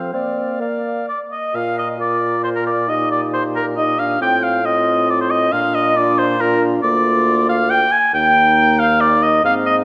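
In a quick 3/4 at 136 BPM with a rubato feel, this spirited, lively classical-period movement for wind quintet is cut from a longer piece, set in B-flat major before turning toward E-flat major at 6.8 seconds. An airy, straight-toned flute carries the melody from a distance, while a warm oboe with light vibrato sits up front on the second line. A mellow clarinet in the background and a dark French horn fill out the accompaniment, and a smooth-topped bassoon anchors the bass, all within a moderate scoring-stage reverb.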